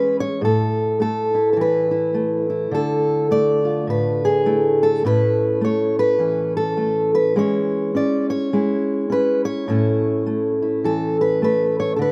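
A lone fingerpicked steel-string acoustic guitar carries this nostalgic, pastoral folk excerpt from its first moment, set up front with a dark, auditorium-sized body and the occasional finger squeak. At 104 BPM in 4/4 with gently swung eighths, it moves through A major harmony, from Asus2 and Dmadd9 to Aadd9 and C#m before settling on A near 9.7 seconds. Recorded outdoors, it carries a light reverb that keeps the 12-second passage intimate and unhurried.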